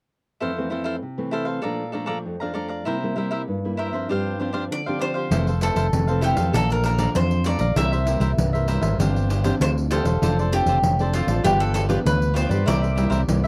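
Festive and joyful, this piece of samba and choro moves at 98 BPM in a straight 4/4 in F major, and it is cut from a longer piece. It opens at 0.4 seconds with a crisp, picked cavaquinho and a dark, fingerpicked classical nylon-string guitar sharing the accompaniment over Fmaj7, Bbmaj7, C7 and G7sus4. At 4.7 seconds a bright, picked bowl-back mandolin with double strings takes the melody. At 5.3 seconds a new section begins as a growly, punchy fretless electric bass arrives up front with a warm, amped tone, joined by a jingly pandeiro that sounds distant, as if in a large room. The harmony then passes through Dm7/F and G7 before settling back on C7, all captured in a dry, close 1970s-style studio sound with light reverb.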